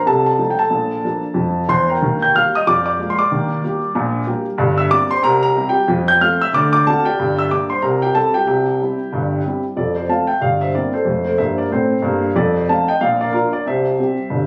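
Captured on a phone in a room with a moderate club-like reverb, this short cut from a longer stride jazz performance puts a lone baby grand piano up front, its tone warm and present with long sustain. At a brisk 186 BPM in 4/4 with a swung eighth-note feel, the solo piano sounds exuberant and playful, ranging from G1 to G6 and settling into F major from 4.6 seconds. A new section begins at 9.8 seconds and carries the piece through to 14.5 seconds.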